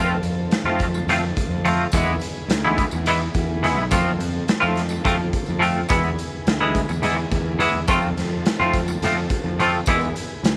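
A short cut from a longer psychedelic rock piece, this recording has light reverb and a raw, gritty edge, with the drums and guitar placed up front. The mood is trippy and dark, moving in an odd 7/8 metre at 212 BPM counted in eighths, with a straight feel as the harmony rocks between F and E roughly every two seconds. A twangy, double-tracked electric guitar carries the riff with a clean, scooped, compressed tone colored by harmonic tremolo. Under it, a picked electric bass growls with overdriven fuzz and a punchy attack, while a raw garage drum kit, recorded in a bright stone room that pumps, drives hi-hat, boomy kick and a medium-tuned snare with a saturated, rolled-off top. A very quiet tonewheel organ holds smooth sustained chords through a slow rotary speaker, its key click faintly audible, and a jingly tambourine sits in the background.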